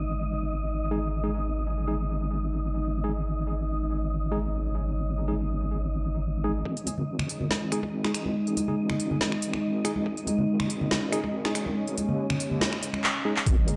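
Deep dubstep at 141 BPM in a half-time 4/4 feel, brooding and meditative, heard as a short cut from a longer piece. From the start, a deep, moody ambient pad holds full-bodied sustained chords around a G#5 harmony, its detuned sawtooth layers thickened with chorus and reverb while a filter sweep runs across it through the first 6.7 seconds. Underneath, a soft wobble bass sits up front with a detuned square-and-sine tone, and a breathy, wind-like noise texture hovers high on a single sustained pitch. A clean tine electric piano adds stabs from 0.9 seconds, filtered and trailed by dub echo. At 6.7 seconds the drums arrive for a build-up: a gritty, overdriven, pitched-down kick thumps up front, joined by a layered house kit of woody snare, smooth hats, finger snaps and handclaps, plus bright congas and bongos played with soft hands and echoed in dub fashion, leading into a drum fill near 13.0 seconds. 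The mix sits in a dark, warm echo-chamber ambience with the top end rolled off.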